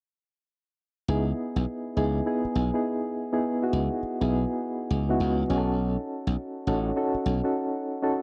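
A glassy slap bass sits up front with a bright, punchy edge, holding the low end from 1.1 to 7.4 seconds in this short R&B excerpt at 102 BPM in C# minor. Beside it, soft electric-piano-like synth keys supply the accompaniment from 1.1 to 8.2 seconds, their round, mellow tone carrying a fast attack that decays gently, colored by chorus and tremolo. The 16th-note swing gives the groove a bouncy feel in 4/4. The harmony moves from C#m9 to B9 at 5.5 seconds. A moderate plate reverb and a dark production frame the two parts in a cozy space.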